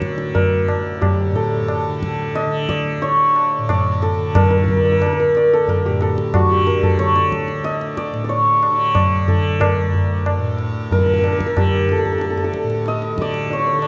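The pulse is a straight 4/4 at about 91 BPM that gradually speeds up across this 13.9-second excerpt from a longer Hindustani classical performance. The mood is devotional and radiant, with the instruments tuned to A4 = 442 Hz. Up front, a mellow, hammered santur carries the melody between C#4 and Eb5, its notes shimmering and ringing. Beneath it, a softly plucked tanpura holds a warm, buzzing, shimmering drone from D2 to D3. The high-tuned tabla keeps time with a short ring, heard close and dry. All three play from start to finish, set in the lingering reverb of a recital hall.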